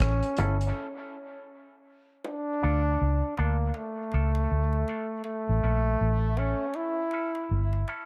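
A bright, up-front trombone with light vibrato carries the melody through dub echo in this hypnotic, spacious dub reggae excerpt, anchored by a round, foam-muted vintage electric bass; a dry, damped 70s drum kit of hi-hat, tight kick and rim click plays only until 0.7 seconds before a break, while a dark, clean envelope-filtered electric guitar and soft-handed, low-tuned bongos, both echoed, enter at 0.4 seconds over a swung feel as the chords move from A to Dm and back under a filter sweep and small-room ambience.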